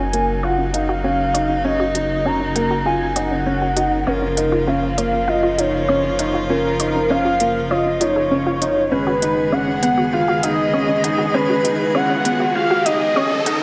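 Luminous and tender, this piano and strings electronica cut from a longer piece moves at 99 BPM in a straight 4/4, building over F#6, A#m/F# and G#m/F# chords. A velvety, chorused synth lead carries the melody above sustained chords from a close, bowed string quartet with vibrato, while a dark, woody, slightly detuned upright piano plays a riff with tape echo and a round sine sub bass holds a deep F#1. A bright, nasal analog pluck plays arpeggios in the background under a filter sweep with chorus and tape echo, smooth electronic hi-hats sit up front, and a riser enters at 11.0 s, all set in a lush hall reverb.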